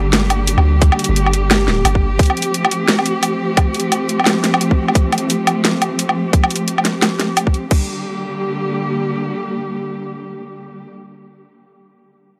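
A dark, lush cello section bowing sustained chords with vibrato and portamento under sidechain pumping carries this heavy, spacious half-time drum and bass excerpt in G minor at 174 BPM, moving from Gm to Fadd9, while a deep sine 808-style bass sounds only until 2.2 s and two overdriven electronic kits, one with bright hi-hats, a cracking snare and woodblock and the other with a tight kick and crash cymbal entering at 0.8 s, drive the groove up front in a dry, gritty recording with light reverb until about 7.8 s.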